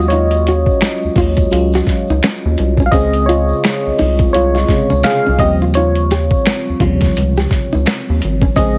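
The recording has a squeezed, heavily compressed radio sound set in a digital ambience, and it is a short cut from a longer piece. It is soulful, introspective R&B with a neo-soul lean, riding a swung sixteenth-note feel in 4/4. An FM electric piano takes the lead throughout, up front with a glassy, bell-like attack, a noise layer and a chorus shimmer, moving through Ebm11, Dbmaj9 and Eb13. Beneath it, a rubbery square-wave bass sits equally forward, hollow and bouncy with a resonant filter pluck and a dark tone. A gritty, pitched-down boom bap sampler-style kit supplies a thumpy kick, a high-tuned snare, hi-hat and finger snaps. In the background, a bright fingerpicked nylon-string guitar traces a second line with audible finger squeak, while a distant egg shaker, snaps and group handclaps echo as if from a large room.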